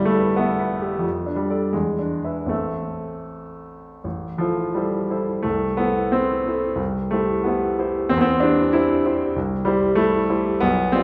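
A polished, present grand piano sits up front within a lush recital-hall reverb, with the room heard from further back. This brief lyrical fragment of a romantic character piece in A minor moves in 2/4 with a rubato feel, drifting between 74 and 97 BPM as the solo piano ranges from G1 to E5. A short opening phrase is restated from 4.0 seconds, the harmony settling on A minor at 2.5 seconds before turning toward C major in the later bars.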